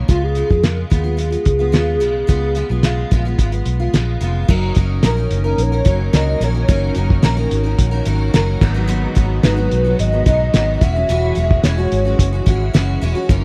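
Dreamy and laid-back, this short excerpt of indie bedroom pop moves at an easy, straight 4/4 pace with a close, dry 1970s-style studio sound in a small room. A cloth-damped drum kit sits up front with a thuddy, muffled character, its fat snare, tight kick and dark cymbals sounding saturated and gritty under a rolled-off top. Beside it, a vintage muted electric bass played with the fingers gives a round, foam-muted low end, while a bright, full-bodied picked steel-string acoustic guitar picks out accompaniment through an analog chorus that lends it a warbly pitch drift. A nostalgic synth lead, blending square, sawtooth and sine tones with a wave-folded edge, fast attack and vibrato, carries the melody through an ensemble chorus until 12.4 seconds. At 4.5 seconds a vintage string machine voiced as violas enters in the background with slow-attack sustained chords and a long release, softening the harmony as it moves from F#6 through G#m7 to E69.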